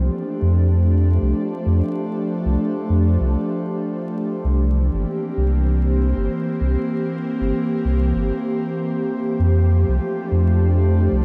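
An airy, breathy pad with a chorus shimmer and a round, deep sub bass begin together in this peaceful, hazy ambient dub fragment at 97 BPM, its sixteenths lightly swung. The pad holds sustained chords moving from F69 to C7 at 4.4 seconds and back to F69 at 9.4 seconds, while the mellow bass sits up front beneath it. A soaking plate reverb and vinyl crackle give the mix a dreamy glow.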